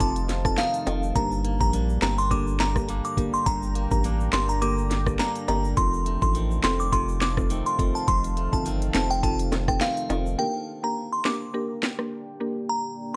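Dancehall at 104 BPM in G minor with a sultry, bouncy swing, this dry, gritty excerpt sets a glassy, warbling synth bell melody with chorus and tremolo over a round, woody mallet-like pluck, a dark detuned pad pumping in the background with reverb, clean twangy electric guitar arpeggios through tape echo, a thick saturated sub bass, an up-front electronic kit of knocking kick, sharp snare, smooth hats, handclaps and rim clicks, and soft tube shaker and timbales, moving from F7 to Gm before bass and percussion drop out at 10.4 seconds, with the guitar following just after.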